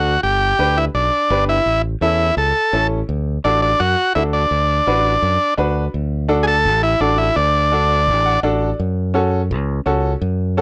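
A sunny, joyful cumbia fragment opens with a buzzy vintage combo organ carrying the melody with light vibrato, over a woody upright piano accompaniment and a growly fingered electric bass given transformer saturation. From 5.9 seconds the organ steps forward as a solo before falling away at 8.4 seconds, while the piano slips in a short fill at 8.1 seconds. The dry, gritty recording keeps each part close and up front, and the clip is cut from a longer piece.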